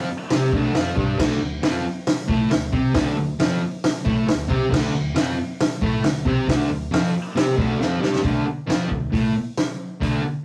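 A straight 136 BPM beat in 4/4 drives this gritty, raw garage rock excerpt in D minor, where a bright, double-tracked fuzz guitar riff spanning D2 to C4 sits up front beside a vintage acoustic drum kit with a fat snare, punchy kick, hi-hat and crash, all caught in a rough rehearsal-room recording with warm saturation and moderate studio reverb, and a drum fill at 7.8 seconds leads into a new section at 8.2 seconds.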